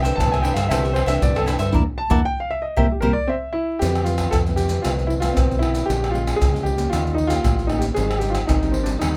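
Samba and choro at 116 BPM in a straight 4/4, sunny and festive in mood, cut from a longer piece. A warm baby grand piano carries the melody up front with a natural tone, taking a solo over the opening 3.8 seconds while the band hits an accent and the drums play a fill leading into the next passage. A bright, crisp picked cavaquinho adds accompaniment only through the first 3.1 seconds, alongside a dark, fingerpicked nylon-string guitar with a classical touch that continues throughout. Underneath, a round, direct fingered electric bass anchors the low end, while maracas, surdo, pandeiro and tamborim bring a deep surdo and hard hands, sounding up front yet distant in a large room. The harmony opens on C69 and later moves through Fmaj7, Bbm7 and Eb7 to settle on Abmaj7, and the overall sound is dry with little reverb.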